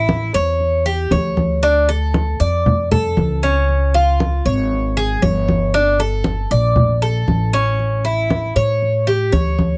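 A bright, metallic Cuban tres picks arpeggios up front over a woody, thumpy pizzicato upright bass and low-tuned, thin-skinned congas, with a drum fill at 1.4 seconds, in this danceable, sultry Cuban son and guajira excerpt at 117 BPM, moving from A7 through Dm, C#, and Gmadd9 back to A7 in a close, detailed sound with light reverb.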